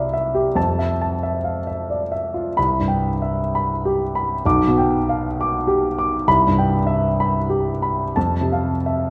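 Intimate and peaceful, this short excerpt from a longer neoclassical minimalist piano piece sets a clear, natural grand piano up front as the solo voice in 3/4 with a rubato feel around 86-100 BPM in C major, its audible action noise close at hand as Cmaj7, Fmaj7 and G7/B chords ring out across a range from B1 to D6 into a reverberant recital hall.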